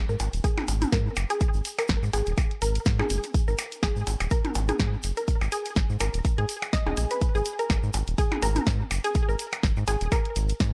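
A swung sixteenth-note groove in four drives this clinical, sparse minimal techno fragment, anchored by a punchy, up-front electronic kick from 0.4 seconds and a layered house kit of snare and bright hi-hats. A deep, round analog bass pulses with sidechain pumping, while a squelchy, detuned blip pluck riff also pumps through chorus and tape echo. Overdriven electronic blips and toms and a grainy tube shaker in the background trail their own tape repeats, all set in light digital reverb within an echo-heavy mix that carries lossy compression artefacts.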